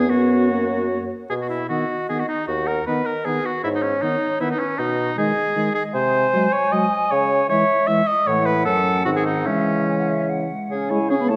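An up-front oboe with vibrato carries the second line beneath a pure, soft-attacked silver flute melody in this graceful, lively classical-period movement for wind quintet, taken at a quick 154 BPM in 3/4 with a rubato feel. Beneath them, a dark, smooth-topped French horn and a clear yet distant clarinet, entering at 0.1 s, fill in the accompaniment, while a bassoon with light vibrato supplies a warm bass line. The harmony turns from B major toward C# minor from 5.9 s, and the passage sits in a wet scoring-stage reverb with a dark production, cut from a longer piece.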